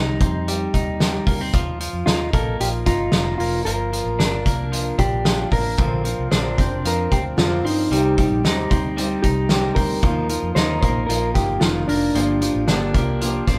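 Jangly indie pop with a youthful, nostalgic mood, where a dark, clean electric guitar carries the melody over warm twelve-string arpeggios, a round, foam-muted bass and a loose, roomy drum kit with a fat snare, before a full-bodied fingerpicked acoustic guitar joins at 5.8 seconds, all captured as a band playing live in one room over a Cm, Ebsus2, Gm7 and Bbadd9 progression.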